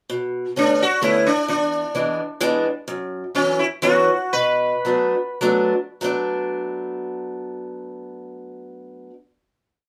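Bittersweet and nostalgic, this short musette waltz in 3/4 sets a woody, boxy picked archtop guitar up front, picking close-voiced backbeat chords through Bm9, E7, F#7sus4 and Bm7. A bright, buzzing sitar with shimmering sympathetic strings carries a motif-based melody in period phrases from 0.6 to 5.4 seconds as the pulse slows. The guitar holds a final chord from 6.0 seconds, all captured live in one room with a wet studio ambience.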